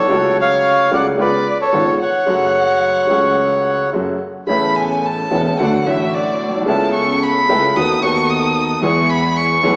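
A reedy, dark bandoneon carries the melody up front over a warm, expressive violin second line with portamento, a bright, woody upright piano and a clear, bowed double bass played sul tasto, opening this melancholic, tense rubato tango at 111 BPM in F# harmonic minor; the bandoneon stops at 3.9 s, and at 4.5 s the harmony turns to A major as the violin takes a solo and a soft-attack chamber string section enters with sul tasto stabs in the background, the band captured playing live in a stone room with a wet reverb and a small speaker sound.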